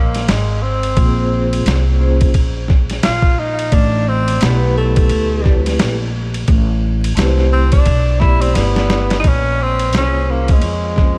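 A breathy tenor saxophone takes the lead in this smoky, nocturnal jazz-hop cut, playing a mellow solo with a soft attack, light vibrato and scooped notes that sit distant and roomy under a touch of delay. Beneath it, a pizzicato upright bass with a woody, dark tone and a gritty, tape-warm, pitched-down boom bap kit with a thumpy kick and medium-tuned snare sit up front, moving at 87 BPM with a swung 16th-note feel. A vibraphone played with medium mallets enters at 1.0 seconds, adding a metallic, ringing accompaniment shimmering with fast motor vibrato. The harmony drifts from Bb7sus2 to Am9, and after a drum fill at 8.6 seconds the piece moves into a new section on Bbm9 at 9.2 seconds. Light reverb and a layer of vinyl crackle give the short excerpt a dusty, late-night atmosphere.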